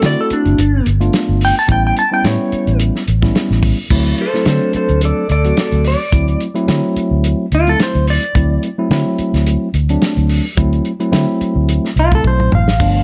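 A clean lap steel guitar opens the piece at once, carrying a gritty, soulful slide melody over a straight-eighth soul blues groove at 108 BPM in 4/4, with a light sixteenth-note swing and a D mixolydian colour. The lap steel is dark and fingered, shaped with volume swells. Beneath it, a mellow tine electric piano holds the harmony, while a vintage foam-muted fingered bass sounds round, punchy and amped. The soul drum kit is dry and lo-fi, with a tight kick, a medium-tuned snare, muffled dark cymbals and a rolled-off top. The harmony moves through D7, G7 and A7 before settling back on D7. The slide line drops out at 8.6 seconds and returns at 12.0, just ahead of a drum fill at 12.2, all set in a small room ambience in this brief cut from a longer piece.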